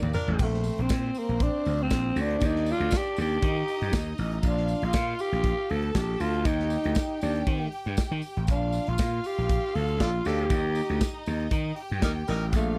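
A dry, close recording with a 1970s studio feel opens this joyful, glamorous disco excerpt in Bb major at 119 BPM, which starts on a drum fill and a band accent in its first 0.4 seconds. A growling tenor saxophone carries the melody up front, raspy and breathy with a subtone, scooped notes and a smooth top, while a bright studio violin section plays a biting, intense second line. The overdriven slap bass sounds punchy and growly, sitting up front beside a polished acoustic drum kit with a tight kick, medium-tuned snare, hi-hat, toms and crash. A distant, roomy horn section adds pop-style stabs at the opening and again from 10.0 to 12.4 seconds, and a jingly tambourine sits in the background. The chords move from Bb through Ebmaj7 and Bbmaj7 before settling on Eb.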